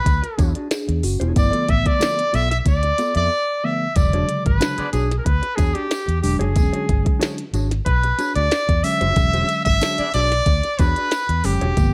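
A clear, punchy trumpet opens this playful funk excerpt at 92 BPM in E mixolydian, soloing up front with light vibrato and a slapback echo over a dark, clean, compressed electric guitar. A vintage fingered bass, foam-muted, round and amped, and a minimal electronic drum kit with a soft kick, tiny snare and clicky hats hold a straight 4/4 groove, while a jingly tambourine sits distant in the background. A mellow tine electric piano adds stabs from 0.7 seconds, moving between E13 and a rootless G9. A brief break arrives at 3.3 seconds. A smooth-topped horn section with octave doubling slips in for short tight hits beginning at 4.8 seconds, tucked behind the trumpet in a small room ambience.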